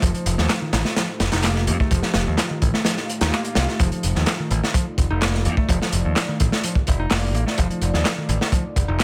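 A crunchy breakbeat drum kit leads this gritty, raw breakbeat excerpt at 127 BPM, its saturated hi-hat, tight kick and medium-tuned snare sitting up front with a rolled-off top and a studio-room feel. Beneath it, a bright, punchy picked electric bass holds down the low end from F1 to F2, while a second picked bass plays a riff higher up, from Eb3 to Eb4, treated with dub echo. Layered, tape-warm electronic handclaps join at 0.5 seconds in the background. A deep, moody ambient pad sustains dark chords built on F7, its warbling sawtooth and sine tones thickened with chorus and built-in reverb and pumped by sidechain. A brief electronic swell appears in the background between 3.1 and 3.8 seconds, and the overall mix stays dry and close.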